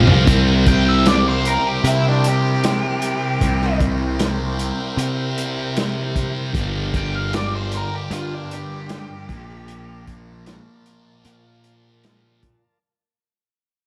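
Trippy and mysterious, this short psychedelic rock excerpt, cut from a longer piece, moves at an unhurried straight four-beat pulse and fades out almost from its first moments. A vintage drum kit opens with a fill, its muffled, lo-fi sound giving a tight kick and medium-tuned snare a rolled-off top, while a punchy, overdriven fuzz bass sits up front alongside a double-tracked, bright fuzz guitar riff treated with distortion and phaser. Behind them, a buzzy combo organ holds sustained chords with heavy vibrato, mixed low and clean. From 0.7 seconds a dark, octave-fuzz lead guitar takes a solo, its distorted line carrying a slapback echo until it stops at 10.0 seconds. The harmony moves from C7 to Gm7 and then Bbmaj7, all set in light reverb and a small room ambience.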